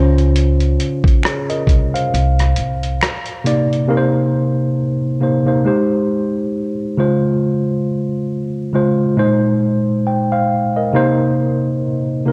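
Hazy and reflective, this lo-fi hip hop fragment, cut from a longer piece, moves in a loose swung 4/4 as a worn, slightly out-of-tune tine electric piano carries the chords throughout, its clean, direct tone dulled by cassette tape and a low-pass filter. A woody pizzicato upright bass sits up front until 3.0 seconds. A gritty, compressed sampler-style drum kit with a thumpy kick, hi-hat and rim click plays until 3.9 seconds with its kick muted from 2.1 seconds, a very quiet human finger snap joins it, and moderate plate reverb and cassette tape colour the whole mix.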